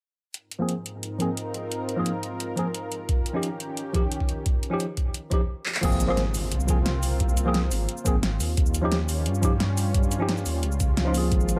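Warm and lush, this liquid drum and bass excerpt at 175 BPM in Ab major opens with an overdriven, metallic-hatted pop kit, a worn, slightly out-of-tune tine electric piano under a filter sweep with phaser and tape echo, and a thick, chorused unison pad holding Ab69 and Eb9 chords, before a thumpy, gritty electronic kick arrives at 3.1 seconds and a drum fill leads into a drop at 5.8 seconds, where a dark, rumbling detuned saw bass with tube saturation enters beneath a very quiet electronic impact, all in a dry, up-front mix.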